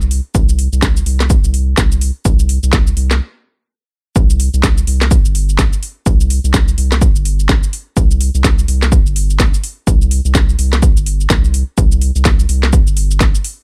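A swung 16th-note groove at 126 BPM in 4/4 drives this sparse, cool minimal techno cut, with a punchy, up-front analog kick entering at 0.3 seconds beneath a layered garage kit of cracking snare, metallic hi-hats and cabasa, both carrying a tape-warm tint. A deep, round analog bass, sine-like and dark with a fast attack and sustained notes, sits up front between G1 and C2, thickened by tube saturation and pumping through sidechain compression. The arrangement stops at 3.2 seconds and then drops back in at 4.2 seconds for the rest of the excerpt, all in a dry space with little reverb.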